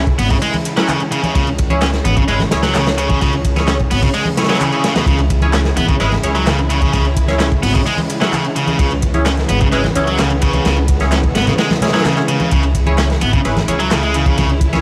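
Raw and funky, this breakbeat excerpt rides a straight 4/4 groove built on a crunchy, saturated breakbeat kit with a tight kick and dark cymbals, backed by an overdriven house kit's handclaps and hi-hat plus bright, soft-handed congas in the background. A woody, thumpy pizzicato upright bass with tube saturation anchors the sole C#m chord, while a tight, bright distorted guitar riff sits up front from 0.2 seconds, its picked notes trailed by tape echo. Behind them, a nasal, band-passed sawtooth stab with phaser and tape echo punctuates the groove, and a rich, biting bowed string section holds sustained chords colored by vintage 12-bit sampler grit and sidechain pumping, all in a dry, gritty mix with vinyl crackle.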